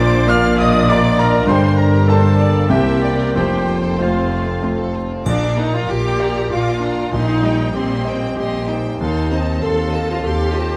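Swaying in 3/4 at 96 BPM with uneven, rubato beats, this passionate, lyrical romantic movement in Bb major, cut from a longer piece, puts an intimate concert grand piano up front on the melody, its action noise audible and its deep bass ringing with long sustain, while a lush violin section also carries the tune in the background and a second, smooth and distant violin line floats above. A focused viola section supplies accompaniment, cellos with expressive portamento join double basses on the bass, and a soft-attacked solo oboe line and mellow French horn chords drop away at 4.9 seconds. From 5.3 seconds a very quiet, dry timpani on calf heads and a bright, faint triangle enter, all set in a moderate scoring-stage reverb with close, detailed miking and a touch of vinyl crackle.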